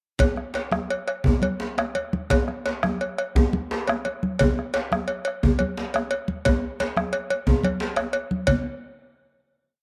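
From 0.2 seconds bright, thin-skinned congas struck with hard hands, a dark, deep bombo, a metallic cowbell ringing its bell pattern up front, and a djembe with metal rattles, also up front and struck with hard hands, launch together into an earthy, festive West African traditional drum ensemble in 12/8 at 116 BPM by the dotted quarter, gradually speeding up within a light, small-room ambience before the whole piece closes on a final hit at 8.5 seconds.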